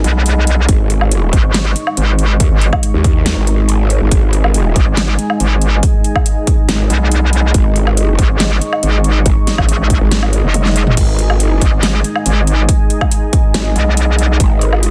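A metallic, bright FM wobble bass sits up front in this chaotic, heavy wobble dubstep passage, cut from a longer piece in G# minor at 140 BPM with a half-time feel. Alongside it, a growling, aggressive growl bass with a formant filter, detuned unison voices and overdrive fills the low end, both basses saturated, compressed and thickened with chorus. Behind them, a lush supersaw pad holds slow-attack sustained chords through a phaser, low-pass filter and sidechain pumping, its sawtooth and square layers rounded out by a sub octave. The electronic drum kit brings a huge snare, metallic hats, crash, toms and woodblock in studio reverb, and a punchy, up-front kick joins at 0.7 s. A very quiet electronic swell enters at 10.3 s, just before a drum fill at 10.5 s, all within a dense, heavily limited modern master.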